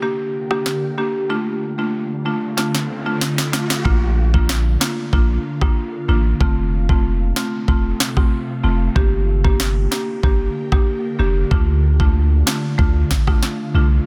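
A dry, dense, heavily limited mix opens this summery, bouncy dancehall excerpt at 94 BPM in Bb major, where a woody, buzzing marimba accompanies an ethereal pad with chorus, phaser and sidechain pumping that sustains chords from Gm to Dm. Knocking kick, rim click and sharp snare arrive from 0.5 seconds, a background riser builds from 2.2 seconds with a drum fill joining at 2.6 seconds, and a punchy, deep sub bass with a pitch-drop attack enters at 3.9 seconds as the chords move through Bb and F.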